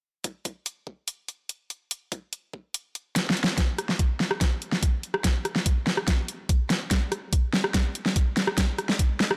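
A light reverb surrounds this heavy, aggressive wobble dubstep passage, cut from a longer piece and moving at 144 BPM in 4/4 with a half-time feel. An electronic kick drum sits up front, layered and overdriven, giving a knocking punch shaped by a high-pass filter. Alongside it, a layered dubstep drum kit brings hi-hat, rim click and a huge snare, also pushed forward and coloured by overdrive. A drum fill arrives at 3.2 seconds and leads into a new section at 3.6 seconds, where a build-up and further fills carry the drums onward. The kick drops out at 9.1 seconds, leaving the kit to finish the passage.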